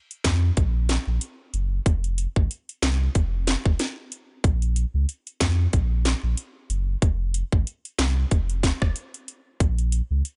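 An electronic island pop drum kit opens this brief, tough and sultry dancehall clip at 93 BPM in Bb minor, its tight kick, sharp snare, rim clicks, handclaps and metallic hats sitting up front with a small-room snap and a lightly swung 16th feel, while a deep, round sine sub bass arrives at 0.2 s with fast attack and mellow sustain, the whole dry mix kept dark and close.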